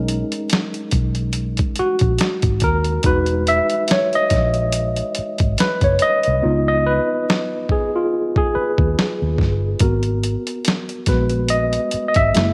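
A worn, slightly out-of-tune tine electric piano sits up front and carries a solo across the whole 12.5 seconds, its lightly overdriven tone heard through built-in speakers as it ranges between G#3 and E5. This short cut from a longer R&B and neo-soul piece moves at 71 BPM in 4/4 with a swung sixteenth-note feel in G# minor, giving it a soulful, late-night mood. Beneath it, a vintage muted fingered electric bass plays a dark, foam-muted, round and punchy part low in the range from E1 to D#2. A boom bap sampler-style drum kit enters at 0.1 seconds, compressed, pitched down and gritty, with a thumpy kick, a medium-tuned snare and hi-hats that drop out between 6.4 and 9.8 seconds. The chords pass through B6, Emaj9, C#9 and G#m7, all set in a light reverb.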